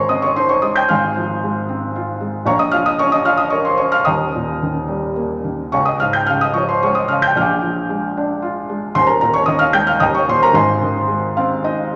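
A felt-muted upright piano plays alone from the first moment, its soft, mellow tone sitting intimate and up front in a lyrical classical excerpt at 112 BPM in 3/4, with uneven, rubato beats that give it a relaxed, sunny mood. Set in Ab major and spanning Eb1 to G6, the harmony moves through Bbm, Eb, Db and Bb7 before an Eb7sus4 resolves to Eb7 and home to Ab at 10.5 seconds. A brief piano fill closes the passage at 11.1 seconds, and a wet recital hall reverb surrounds the sound.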